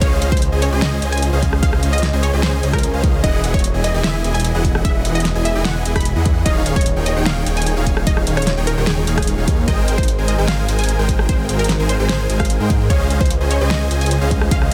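A half-time future bass groove, playful and lush, rides on a punchy, tape-warm electronic kick and a pop drum kit with metallic hats, rim clicks and a fat, softly clipped snare. A thick, chorused detuned saw bass sits up front beneath huge, airy, bright supersaw chords with a noise layer, while a full-bodied, wave-folded unison pluck carries the melody through vintage 12-bit sampler grit and digital delay, with sidechain pumping on the bass, chords and pluck. A very quiet electronic swell arrives at 9.0 s, and the mix is dry, dense and heavily limited, with the chords moving from Dbmaj7 through Emaj7 and Eb7sus4 to Abmaj7.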